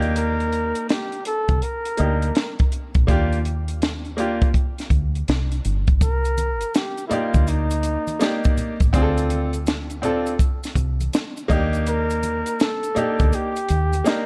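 Dark, lossy-edged production with light reverb and small-room ambience frames this smoky, nocturnal jazz-hop piece at 82 BPM with a swung 16th feel in C dorian, where a breathy flugelhorn with vibrato and scooped notes carries the melody over brilliant grand piano chords, a round, foam-muted dub bass and a dry cocktail kit with a high-tuned snare and punchy kick, while close maracas and hard-handed congas join in the background at 6.0 s.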